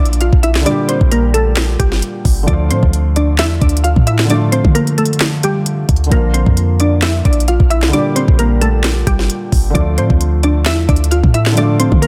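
A glassy, detuned wavetable pluck carries the melody up front with a chorus sheen, over a deep, boomy 808-style bass and a knocking, tape-warm trap kit of sharp snare, crisp hats and handclaps in a half-time feel. A felt-muted upright piano adds soft, intimate accompaniment, while a very quiet dark brass ensemble lands brief stabs at 2.5, 6.1 and 9.8 seconds. This brooding, hard-hitting hip hop excerpt moves through Bb, Gm and Dm chords under a dense, heavily limited modern master with digital ambience.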